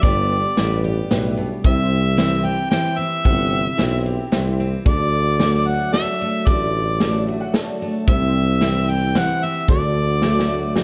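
A sunny, down-home stretch of honky-tonk and classic country opens with the full band at once, moving in 3/4 at 112 BPM in D mixolydian. Up front, a clear harmonica carries the melody with light vibrato and a smooth top, played in a classical style. Beside it, a mellow tuba handles the bass with vibrato, scooped notes and a jazz-style lilt, while a natural country drum kit of kick, snare and hi-hat keeps time with a punchy kick and medium-tuned snare. Further back, a bright, full-bodied picked dreadnought acoustic guitar and a detuned, jangly, boxy upright piano fill out the accompaniment over chords of G, C and D. The piano breaks out with a woody fill at 7.0 seconds, and a drum fill at 10.2 seconds closes this excerpt, all set in light reverb with a soft, rounded high end.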